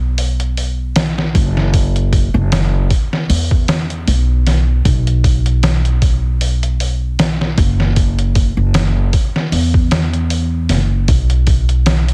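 Hypnotic and melancholic, this trip hop excerpt moves at 77 BPM in 4/4 with a light sixteenth-note swing, built on a woody, gut-strung pizzicato upright bass sitting up front from the start and a pitched-down, muffled sampler-style drum kit of hi-hat, thumpy kick and medium-tuned snare that enters at 0.2 seconds with studio reverb, all pressed into a heavily compressed, radio-like sound with little room around it.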